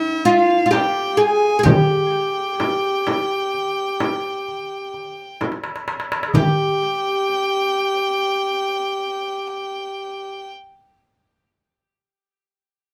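Turkish makam ensemble music in 10/8, passionate and festive, heard from further back in a small, reverberant room as a fragment of a longer piece. A bright, woody fretless oud carries the melody with a tape echo, while a biting violin with vibrato and a mellow, classical-style clarinet trace second lines. A crisp metal-shell darbuka and a soft-handed, vintage-sounding frame drum join at 0.7 seconds, play a fill from 5.4 to 6.4 seconds, and fall away at 6.8 seconds, leaving the three melodic voices to carry the closing section.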